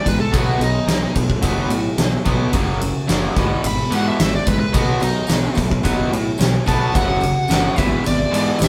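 Classic rock in B major at 109 BPM, this short, sunny and driving cut from a longer piece is built around a smooth overdriven lead guitar solo that carries the melody throughout. Beneath it, two bright, picked rhythm guitars, one crunchy and one raw with a garage edge, sit in the background playing riffs, while a very quiet, full-bodied dreadnought acoustic guitar adds picked accompaniment with audible finger squeak. A round, fuzzy electric bass and a big, natural-sounding drum kit enter at 0.1 seconds, the kit up front with a punchy kick, medium-tuned snare and ride cymbal. A jingly, compressed tambourine slips in very quietly at 5.0 seconds. The chords move from B to F# to E over G#, and the whole band sounds as if playing live together in one room with moderate studio reverb.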